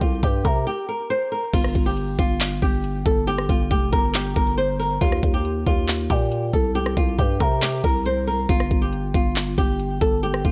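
A fingerpicked flamenco guitar leads this hard-hitting, eerie trap excerpt, its acoustic tone carrying audible finger squeak and a tape echo as it plays the melody up front. Beneath it, a growling 808-style bass with a buzzy, sine-based body and a fast attack that decays sits equally forward, anchoring the low end. The electronic trap drum kit, the loudest part, brings a knocking kick, crisp hi-hats, handclaps, rim clicks and a crash cymbal in a half-time feel at 138 BPM. A brief break arrives at 0.7 seconds before the full groove settles in at 1.5 seconds, moving through chords of Fsus2, Eb and C5. Light reverb lends the produced mix a subtle sense of space, keeping the guitar, bass and drums close and punchy.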